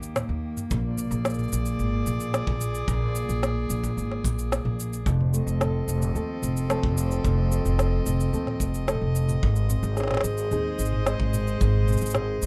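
A string quartet, one player per line, opens this pastoral folktronica excerpt with sustained bowed chords, its gut-string tone reedy and distant under plate reverb, while an upright bass plays pizzicato underneath with a growly, up-front sound. An organic electronic drum kit carries shaker, toms and a woody snare from the start, and at 0.7 s a punchy acoustic kick joins, played with brushes and sounding roomy, with a rolled-off top. The harmony moves from Eb through Bb7 and F7 before settling on Ab. A small, thumb-plucked nylon-string guitar enters at 5.1 s with arpeggios washed in delay and plate reverb. The whole has the light reverb and rough, homespun balance of a home demo mix, and the piece is cut from a longer work.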